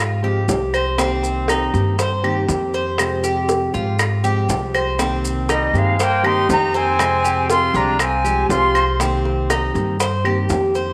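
A bright, metallic Cuban tres with slapback echo picks out arpeggios up front over dark fingerpicked nylon-string guitar and a thumpy pizzicato upright bass in this nostalgic Cuban son and guajira groove in C minor at 120 BPM, with tight high-tuned bongos, grainy maracas and background claves entering just after the start, before an airy, distant jazz flute takes the melody at 5.5 seconds alongside a punchy vibrato trumpet second line, all set in a moderate echo chamber reverb.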